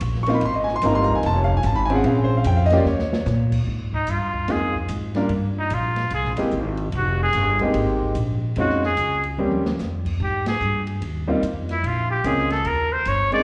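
Heard through a club's PA with a modest room ambience and dulled highs, this sophisticated small-group swing and bop excerpt pairs a woody, thumpy gut-string upright bass and a dark, smooth drum kit with boomy kick and slapback echo under an intimate grand piano whose action noise is audible, before a nasal, breathy straight-muted trumpet with scooped notes and light vibrato takes the melody at 3.9 seconds, and the band hits an accent at 10.4 seconds.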